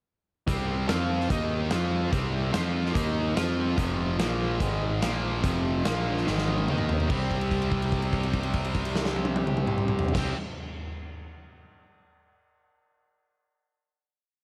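A distorted electric guitar, fuzz bass and a big rock drum kit all enter together at 0.5 seconds, launching a confident, driving classic rock piece at 145 BPM in a straight 4/4. The double-tracked guitar sits up front with a bright, overdriven power-chord riff, moving through power chords on C, F, E♭, B♭ and A♭. Beneath it, the picked bass has a round, fuzzy tone and drives steady eighth notes that double the guitar riff. The acoustic drum kit rings in a big room with a tight kick, a medium-tuned snare, hi-hat, crash and toms holding down a rock groove. A drum fill from 6.3 to 7.1 seconds sets up a final C chord held until about 10 seconds, all under a light reverb.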